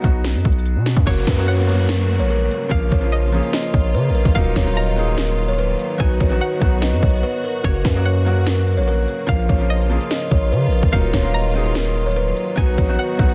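A half-time trap beat at 146 BPM drives this menacing, hard-hitting hip hop excerpt, with a hard-clipped kick, sharp snare, crisp hats and crash cymbal up front beside a heavy, aggressive distorted 808-style bass, while a soft felt-muted upright piano with audible action noise plays filtered accompaniment throughout; from 1.1 seconds a woody kalimba melody, a twangy, bright resonator pluck with chorus and tape echo, biting symphonic strings with light vibrato and a background downlifter join over a Gb, Bbm, Ebmadd9 and B progression, pausing for a brief break at 7.2 seconds, all in a dry, dense, heavily limited mix.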